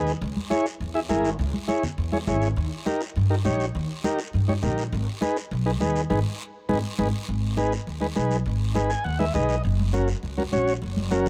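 Passionate and danceable, this cumbia excerpt features a vintage, reedy combo organ with heavy vibrato and an overdriven edge, riding up front alongside a woody, growly upright bass. A raspy guiro sits close, while bright, thin-skinned congas sit close but in the background, all in light reverb. The band hits an accent at 6.1 seconds, a drum fill leads into a new section at 7.3 seconds, and the organ adds a fill at 8.8 seconds.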